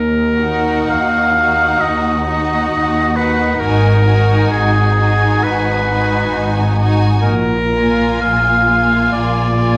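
A clear oboe sits up front with light vibrato, singing a plaintive second line over a slow, solemn romantic passage for symphony orchestra, cut from a longer piece. From the very start, dark, woody cellos and a focused double bass section with a smooth top lay down the bass. At 0.4 s the upper strings join: a lush violin section carries the melody high and expressive, a second violin line with soft attack and portamento drifts in from a distance, and close, full-bodied violas fill in the accompaniment with their own sliding vibrato. The rubato feel lets the 4/4 pulse breathe as the harmony moves from Ebm to Abm7 and then to Bb7, leaving a melancholic air hanging unresolved. A recital hall reverb wraps the orchestra in a wet, resonant space.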